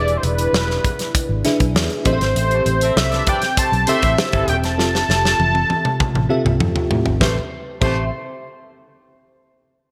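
A fat, detuned sawtooth lead carries the melody up front, its warbling vibrato and sub-octave weight sweetened by chorus and delay until it drops out at 6.6 s. This short cut from a longer piece of polished 1980s jazz-funk pop moves at 99 BPM in A minor, with an urban, nocturnal mood over chords of E7, Am7 and Fmaj7. Beneath it, a sparkling, bell-like FM electric piano comps through phaser and analog chorus, while a dark, foam-muted fingered bass sits round and punchy in the low end. A bright-cymbaled studio drum kit with a fat snare and punchy kick drives the groove, playing a fill from 4.8 to 7.2 s, and very quiet low-tuned congas ring softly in the background. A clear, vintage-style horn section enters at 2.5 s as a second line in a jazz-style ensemble, all set in a moderate plate reverb with a crisp digital 1980s sheen.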